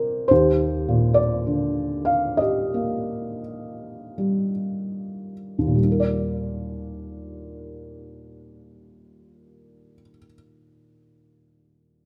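The rhythm is free and rubato in 4/4, drifting between 36 and 55 BPM, and it slows down over the first 5.8 seconds before a second passage begins. This is a calm, lyrical classical piece for solo piano in Eb major, cut from a longer work. A felt-muted upright piano plays alone throughout, opening on an Ebmaj7 chord at 0.3 seconds and ranging from C2 up to F5. Its tone is dark and intimate, with the thick felt giving each note a soft, short sustain. The piano sits up front in a moderate recital hall reverb, which lends the close, mellow sound a gentle sense of space.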